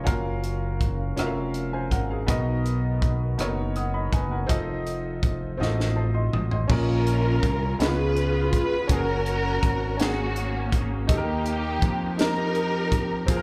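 Fervent and solemn, this slow gospel passage moves at 54 BPM in a straight 6/8, heard as a live club performance through the venue's PA with light reverb, and it is cut from a longer piece. A clear, worn grand piano with slapback echo supplies the accompaniment throughout, over a punchy, up-front fingered electric bass with a modern bright tone and a crisp fusion drum kit whose high-tuned snare, punchy kick and pumping small-room sound sit close to the listener. For the first 6.7 seconds a very quiet, dark French horn section holds sustained chords with classical vibrato as the harmony passes through Gbmaj7, Bmaj7 and F7, and a drum fill from 5.6 seconds leads into the second half. At 6.7 seconds the horns stop and a lush symphonic string section takes the melody, bowed and focused with vibrato and a smooth top, its sound carrying both slapback and tape echo. Beneath the strings the chords move from Bbm through Db7 and Gb to Eb.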